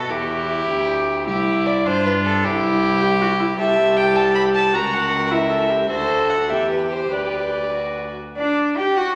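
A graceful, cheerful classical-period string quartet opens at once in a rubato 6/8, with the first violin's close, up-front melody carried over a second violin line, a warm viola accompaniment and a rich cello bass, all four bowed by single players with a reedy, gut-string period tone and set in the wet bloom of a recital hall for a brief passage taken from a longer piece.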